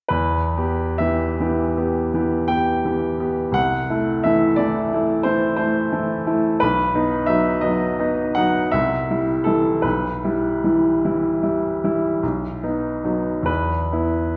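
A clear, open baby grand piano begins alone at 0.1 seconds, playing a wistful, yearning romantic nocturne in E minor and 9/8, with a rubato pulse of 43-61 BPM counted in dotted quarters. The solo piano sits up front, ranging from B1 to G5 and moving from E minor through A minor over C, B, C and E minor over B, returning to B before landing on an E5 power chord at 13.5 seconds. A wet recital hall reverb places the listener further back in the room, and this passage, cut from a longer piece, ends at 14.4 seconds.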